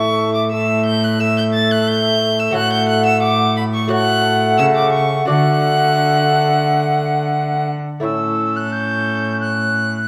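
Rustic and solemn, this passage cut from a longer piece is a Renaissance-style consort dance in four with a straight feel. A close, bowed violin with a gut-string, period-style tone carries the melody, while a distant alto recorder, pure and woody with vibrato and a soft attack, sings an expressive second line. A fingerpicked lute with delicate double strings, some tuned in octaves, adds accompaniment alongside a mellow, roomy bassoon with light vibrato. Up front, a rich, reedy cello holds the bass. The harmony moves from A through F#m over A to D, and a new section arrives at 8.0 s back on A, with the consort placed in a recital hall with generous reverb.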